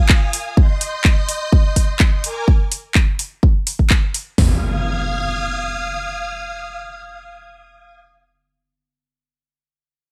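Piano house at 126 BPM in F minor, this energetic, soulful excerpt is cut from a longer piece and moves through Fm7, Eb6 and Bb7 before returning to Fm7. A vintage string machine carries sustained violin chords across the full eight seconds, its sawtooth tone shimmering under an ensemble chorus with a soft attack and a sidechain pump. For the first fraction of a second, a lush, bowed studio string section adds an intense, vibrato-rich texture in the background, also pumping with the sidechain. Two layered electronic house drum kits sit up front in a small room ambience, one driving a punchy kick, toms and metallic hi-hats, the other adding handclaps and more hats, until the drums drop out around 4.5 seconds. From 4.4 seconds an electronic impact lands up front and rings through to the close, all inside a digital ambience.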